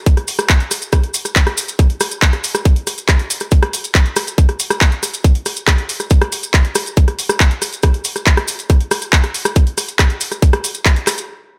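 Hypnotic and alien, this trance excerpt pairs a tight, up-front electronic kick drum with a tape-warm techno kit of handclaps, hi-hat and rim click, both re-recorded in a small room, while grainy, mellow acoustic maracas sit lower in the mix in their own small room, all within a digital ambience, until the kick drops out at 10.9 seconds and the rest halts at 11.3 seconds.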